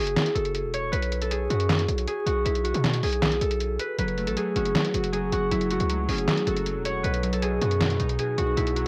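A half-time 157 BPM trap groove of muffled, pitched-down sampler drums with handclaps, hi-hat and a medium-tuned snare drives this brooding, hard-hitting hip hop excerpt, where a punchy, heavy 808-style bass with a noise layer sits up front beside a fingerpicked, ringing concert harp melody dulled by low-pass filtering, cassette tape and analog delay, before glassy digital keys with chorus and a filter sweep join at 4.0 s over F#m and B chords, all steeped in the character of a home cassette recording and vinyl crackle with little reverb.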